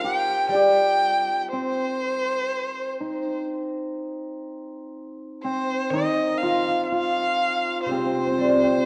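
A clear, smooth erhu sings the melody up front with vibrato and portamento, while a shimmering hammered dulcimer rings out a second line beside it in this graceful, wistful excerpt of Chinese traditional chamber music in a free, rubato feel. From 0.5 seconds a bright, silvery guzheng played with fingerpicks adds low ringing accompaniment. The ensemble sits in a wet, spacious reverb, and the sound carries the worn, warbling pitch drift of old cassette tape.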